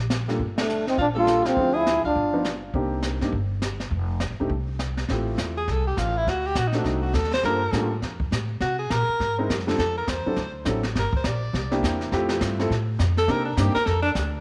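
Small-group jazz in a swing and bop vein, this brief excerpt from a longer piece feels swinging and relaxed. A pizzicato upright bass with a woody tone and a brush-played drum kit, dark and smooth with a boomy kick, high-tuned snare, dark cymbals and a rolled-off top, carry the groove from the start, while a grand piano with short sustain comps underneath. A band accent lands at 0.5 seconds, and a mellow, whispered trombone, up front with a slapback echo, states the melody alongside a clear alto saxophone until 2.6 seconds. The alto returns at 5.6 seconds for a present solo with vibrato and subtone, weaving over shifting changes that move through extended and altered chords. A moderate echo-chamber reverb gives the studio room a sense of depth.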